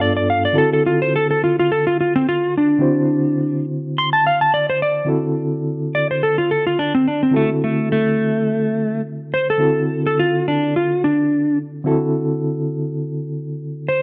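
A lightly swung 4/4 groove underpins this soulful, laid-back blues fragment, which moves from a G9 to a D9 chord. A dark, clean electric lap steel guitar sits up front and carries the melody as a fingered slide solo throughout. It is backed by a reedy, worn and slightly out-of-tune electric piano with fast tremolo heard through its built-in speakers, all set in a moderate echo chamber reverb with a digital ambience.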